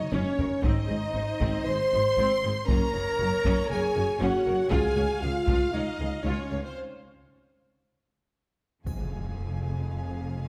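A dark, soft-attacked French horn section sits up front in this relentless, dramatic orchestral film cue, holding sustained chords over heavy-stick taiko drums and a bowed foundation of close double basses and smooth-topped cellos. Clear, intense chamber violins carry the melody with vibrato, shadowed by a lush second violin line in the background and focused violas, inside a moderate scoring-stage reverb. After a break from 6.8 seconds and a drum fill, a huge, bright impact lands at 8.9 seconds with a faint triangle as the harmony arrives on F minor.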